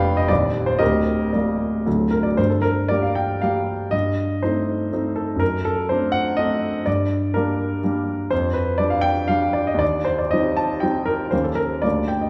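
In a rubato 3/4 feel at 109-128 BPM, this stormy, passionate romantic character piece for solo piano in G minor, cut from a longer work, presents a clear grand piano with audible action noise spanning D1 to B5, set in a wet recital-hall reverb heard from further back in the room, moving from a brief opening passage into a second section at 2.4 seconds that travels through Gm, D7/F# and Eb7 harmonies.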